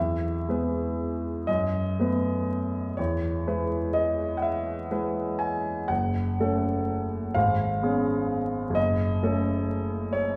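A clear concert grand piano opens this short fragment of a romantic nocturne, playing alone in E major from 0.0 to 10.4 s with a serene, tender mood. The tempo is very slow, around 39-44 BPM counted in dotted quarters, in 6/8 with a freely breathing rubato. The piano's voice is natural and up front, spanning F#1 to G#5, with a deep bass and long sustain that lets each chord ring. The harmony moves from E through B7/F# and back to E, then turns toward F#m and C#7/G# before settling on F#m again. A wet recital hall reverb and a listening position further back in the room surround the instrument, a vinyl crackle runs beneath it, and the piano is tuned to A4 = 444 Hz.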